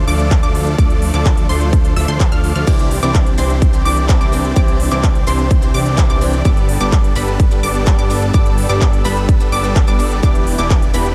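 Uplifting and triumphant, this short cut from a longer festival progressive house track drives along at 127 BPM in a straight 4/4, centred on C major and moving from Dm through Cadd9 and Gadd9 to Em7. A huge, euphoric supersaw lead carries the riff, its detuned sawtooth unison sounding bright and compressed with digital delay and sidechain pumping. Beneath it, a fat, saturated analog bass pumps in the low register, while a lush, punchy unison pluck spins arpeggios high above, also pumping and trailed by delay. A punchy, overdriven electronic kick sits up front, joined by a layered dance kit with crisp hats, handclaps and crash cymbal. Very quiet, veiled con sordino strings hold sustained chords softly, and from 2.7 seconds a boxy, picked swing-style acoustic guitar adds accompaniment in the background. The production is dark and dry, with little reverb.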